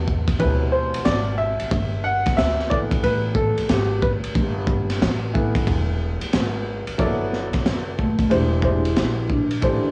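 A swung 91 BPM groove in 4/4 from a crunchy, saturated breakbeat kit with a tight kick, high-tuned snare and dark cymbals carries this relaxed, cool jazz-hop excerpt in G major, as a thumpy pizzicato upright bass on gut strings holds the low end, an intimate upright piano with audible action noise takes a solo through the first 7.0 seconds over chords like D13 and G69, and a mellow, band-limited vibraphone with soft mallets and slow motor vibrato enters at 8.0 seconds through tape echo over an E7alt, all set in the light reverb and small-room ambience of a home recording on cassette.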